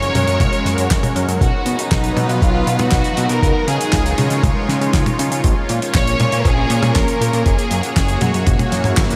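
A bowed symphonic violin section carries a smooth-topped, vibrato-rich melody on a diffuse ambient delay. Around it sits a thick, detuned unison pad of sustained, bright chords shimmering with chorus and phaser, above a fat, nasal analog bass with a quick filter pluck. A dry, airy 70s drum kit of handclaps, hi-hat, toms and a fat snare drives a straight italo disco groove, joined at 0.4 seconds by a gritty, thumpy electronic kick. The whole mix is dreamy and soaked in a huge reverb, giving the melodramatic, nostalgic mood a hazy glow as the harmony moves from Gbadd9 through B, Dbadd9 and Bbm. A drum fill begins at 8.5 seconds, and the band hits an accent at 9.0 seconds just before this short cut from a longer piece ends.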